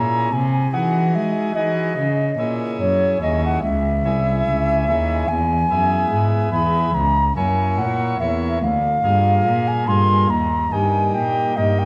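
Radiant and serene, this baroque-style sonata movement with continuo moves at 72 BPM in 4/4 with a rubato feel, tuned to A4 = 445 Hz and cut from a longer piece. A pure, woody baroque flute carries the melody with vibrato and a soft attack over a full chamber organ principal chorus with a touch of chiff, while a single bowed cello with a nasal, reedy gut-string tone holds the bass. All three sit up front and play throughout, set in a wet recital hall reverb within a dark, warm production.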